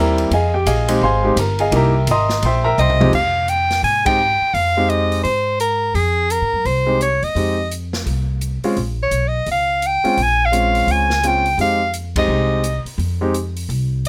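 Small-group swing and bop jazz in F minor at 170 BPM with a late-night, smoky mood, this brief cut opens with warm concert grand piano, woody pizzicato upright bass and an airy, polished big-band drum kit before a drum fill at 2.8 seconds ushers in a clear, forceful soprano saxophone solo with vibrato over Fm7 and Bbm7 changes, punctuated by band accents and set in light reverb.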